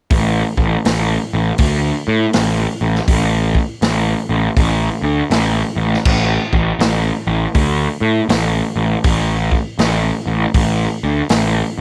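A fuzz-drenched, overdriven picked electric bass carries the low end of this brooding, smoky blues rock and southern rock excerpt, sitting up front over a dry vintage drum kit whose punchy kick, medium-tuned snare, hi-hat, crash and dark cymbals swing with a rolled-off top in a natural studio room.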